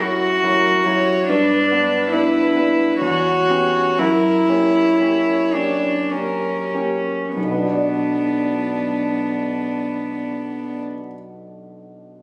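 Classical slow romantic piano-trio fragment in a rubato 3/4, elegiac and yearning, where a dark, intimate violin melody played sul tasto with light vibrato floats above a pure, up-front cello second line, both bowed softly and falling silent at 10.8 seconds while the clear, present grand piano accompaniment rings on with long sustain until 12.2 seconds, the opening slowing over its first 7.4 seconds before settling onto B minor, all heard through the wet reverb of a recital hall captured on a phone in the room.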